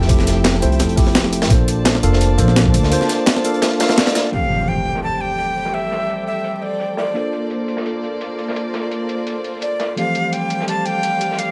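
A lightly swung 170 BPM breakbeat in 4/4 drives this dreamy, uplifting liquid drum and bass passage: a gritty, pitched-up sampler-style kit sits up front, a saturated acoustic kit with a rolled-off top sits in the background, and a thumpy electronic kick and a woody, growly pizzicato upright bass play only through the opening 2.9 seconds. A clean tine electric piano with digital delay and an intimate, bowed sul tasto chamber string section, low-pass filtered and sidechain-pumped, carry Fmaj9 and Bbmaj9 chords in F major throughout. At 4.0 seconds a breathy, crisp-attacked jazz flute with vibrato comes in up front, and from 4.3 seconds an electronic impact hits and a filter sweep runs over the drums, all set in light studio reverb.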